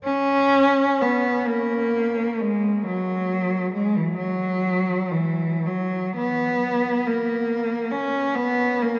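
Classical and meditative, this lonely nine-second excerpt of unaccompanied cello unfolds freely in a rubato 6/8 at about 43 dotted-quarter beats per minute, its single bowed, warm voice moving between E3 and C#4 with expressive vibrato and portamento, heard up front yet distant within a cathedral reverb that lingers for 5.3 seconds.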